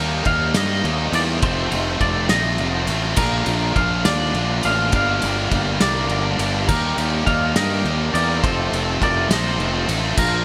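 Carefree and upbeat, this indie rock excerpt moves at 69 BPM in a straight 6/8, cycling through Eb, F7, Bbmaj7 and Gm7 as a twangy, scooped clean electric guitar carries the melody with delay over riffs from a high-gain distorted guitar and a raw, overdriven garage guitar tucked in the background. A growly, fuzzed fingered bass sits up front, while a loose acoustic drum kit with a punchy kick, dark cymbals and a pumping gated-reverb room holds the groove. At 5.8 s a clear trumpet with smooth vibrato slips in behind as a second line with its own delay, all bathed in a lush hall reverb and bright 1980s-style digital production.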